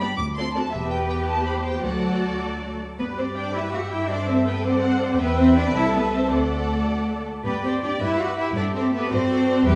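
In a straight 6/8 lilt at 108 dotted-quarter beats per minute, this graceful, spirited classical-period movement for string orchestra, tuned slightly low to A4 = 437 Hz, is cut from a longer piece and opens on D7 before settling into G-based harmony around 3.0 s. A dark, woody violin section with a soft attack carries the melody over a lush, distant second violin line and focused violas. The close, up-front cellos and the smooth double basses, which enter at 0.2 s, anchor the bass, all bowed with vibrato inside a wet recital-hall reverb.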